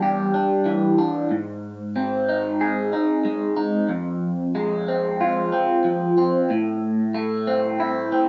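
An electric guitar takes the solo through a small old amp, its tone slightly broken-up, compressed and given a phaser, sitting up front in this dark, mysterious rock excerpt at 93 BPM in 4/4 with a straight feel. Picked across a range from E2 to G#4, it moves through Em7, G#, Fm and Am over about 8.3 seconds. A moderate studio reverb and a top end that stops around 7.6 kHz give it a close, live-in-the-room sound.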